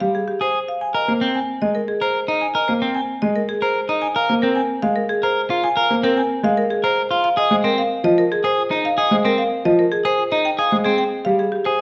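Propulsive and hypnotic, this minimalist classical pattern piece in Eb major moves at 112 BPM in 3/4, with a bright, woody marimba struck with hard mallets carrying the melody up front, a slightly broken-up, picked electric guitar adding arpeggios from 0.4 seconds, and a clear, worn grand piano holding the accompaniment until 11.4 seconds, while the recording sits in a wet recital hall reverb with a dark production as the chords move from Abmaj7 through Ebsus4, Bb5 and Fm7 back to Abmaj7.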